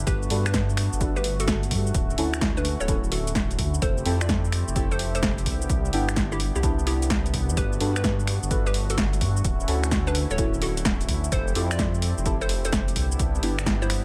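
A swung two-step garage groove with a punchy electronic kick and an up-front analog drum machine of snare, hi-hat, cabasa and finger snaps drives this soulful, bouncy excerpt, where a dark, rumbling detuned saw bass sits under a smooth, warbling vintage pad with chorus and sidechain pumping, soft phased chord stabs with chorus and diffuse delay, and a hollow square-wave pluck melody with chorus and delay, all set in light digital reverb as the major-ninth chords cycle from Gmaj9 through Dmaj9, Fmaj9 and Cmaj9.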